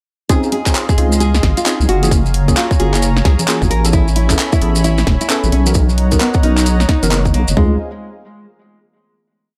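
A dry, gritty hardware recording with digital ambience carries this short, sunny and soulful two-step UK garage piece, which drops in at 0.3 seconds and settles on a final chord at 7.6 seconds. An overdriven garage kit snaps out a tight two-step kick with floor toms, while a second overdriven kit layer adds a cracking snare, handclaps, high congas and skipping swung hi-hats. Grainy maracas shake sixteenths, and from 1.0 seconds a deep, wobbling square-and-sine bass sits up front with a skipping syncopated line. Above them, a fingerpicked nylon-string guitar repeats a full-bodied riff through tape echo, and mellow, detuned chord stabs with ring modulation and a cassette-tape tint punctuate syncopated rootless voicings. A smooth sawtooth pad sustains with chorus, tremolo and sidechain pumping.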